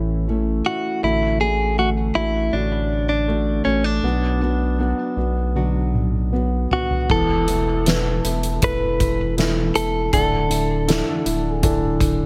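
Pop ballad at 80 BPM with a heartfelt, emotional mood, in which an intimate grand piano with audible action noise and a dark, thumb-plucked nylon-string guitar playing arpeggios in the background sit over a deep, thick, saturated sub bass up front, a clean, compressed electric guitar recorded direct carries the melody with delay from 0.7 s, and a soft-mallet acoustic drum kit with dark cymbals, a fat snare and a boomy kick arrives with a fill at 5.6 s before the harmony moves from A, D/A and Bm to Esus4 at 7.1 s and Dsus2 at 10.1 s, the mix sitting in light small-room reverb.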